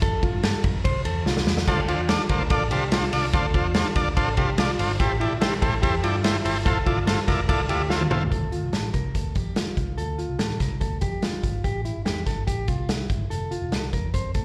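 Jangly indie pop in D minor at 144 BPM, this restless, bittersweet clip from a longer piece sounds like a live gig heard through a venue's PA, with light recital-hall reverb. A dark, clean electric guitar plays arpeggios throughout, colored by analog delay and slapback echo, while a foam-muted, round picked electric bass sits low beneath it. The vintage drum kit is up front, with a punchy kick, dark cymbals and a pumping small-room sound, and it throws in fills at 1.3 and 7.9 seconds. A buzzy combo organ with heavy vibrato and its own slapback echo joins at 1.7 seconds and drops out by 8.2 seconds, just as the second section begins. The chords circle through Fmaj7, Dm7 and Am7, giving the passage its wistful, unsettled pull.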